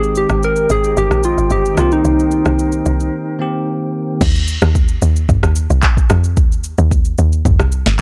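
A dry, gritty cassette-tape sound frames this relaxed amapiano cut, where a round, warbling synth lead with chorus, tremolo and tape echo carries the melody over bell-like electric piano and mellow, vibrato-laden flute chords moving from Abmaj7 to Cm7, until a break at 3.1 s gives way at 4.2 s to a drop in which the punchy, woody log drum bass and the afro-pop kit, with its deep kick, sharp snare, handclaps, shaker, rim click, toms and crash cymbal, carry on alone to 8.0 s.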